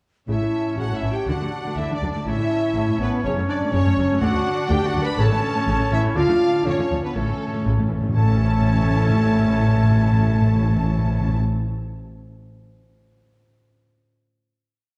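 A dark, warm mix set in a moderate scoring-stage reverb carries this heroic, soaring cinematic adventure cue, where an intense, distant violin section sings the tune with a smoother violin section, a solo clarinet and a mellow French horn section doubling it. A clear oboe and a pure flute ensemble add sustained chords, the viola section drives a rhythmic ostinato, and the cello and rich double bass sections anchor the bass line while a very quiet concert harp sweeps through ringing arpeggios. Dry timpani enter at 5.2 seconds and roll in a fill at 7.2 seconds before a final chord that the harp carries through to 12.1 seconds.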